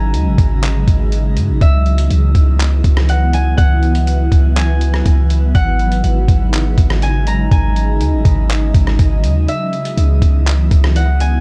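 A fingerpicked concert harp melody, ringing softly through a low-pass filter and digital delay, opens this ethereal, melancholic cloud-rap excerpt over a shimmering, granular pad of sustained chords treated with chorus, phaser, reverb and sidechain pumping, while a deep, boomy 808-style bass sits up front. Gritty, pitched-down sampler drums with a thumpy kick, hi-hat, handclaps and rim clicks carry a half-time hip hop feel, with a brief break at 9.5 seconds. A faint mains hum lingers in the digital ambience underneath.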